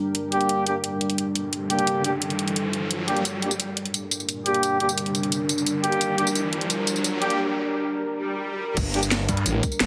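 A snarling, detuned saw bass growls in at the drop at 8.8 seconds, saturated and up front beside an overdriven, tight electronic kick, in this dark, tense technical drum and bass passage cut from a longer piece. Before that, a deep, moody pad holds sustained chords with chorus and sidechain pumping, while a dark brass ensemble fires smooth-topped stabs through a low-pass filter and delay. The drum kit's cracking snare, bright hats, tambourine and crash sit up front as electronic risers climb from 1.3 seconds and a filter sweep builds from 3.3 seconds through a break at 7.4 seconds, set in a lush hall reverb under a dense, heavily limited master.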